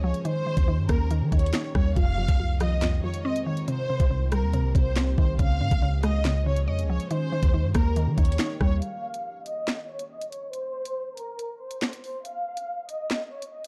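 A dark, dry production carries this menacing, cold drill piece at 140 BPM in a half-time feel, where a lush, vibrato-rich violin section sings the melody through a low-pass filter and delay over a woody, detuned mallet-like pluck, a moody, warbling pad in the background, a deep, sine-toned 808 bass and an up-front electronic kit of knocking kick, sharp snare, bright hats, rim clicks and finger snaps, until at 8.8 s the pluck, pad and bass stop for a break in which the violins take a filter sweep over the drums.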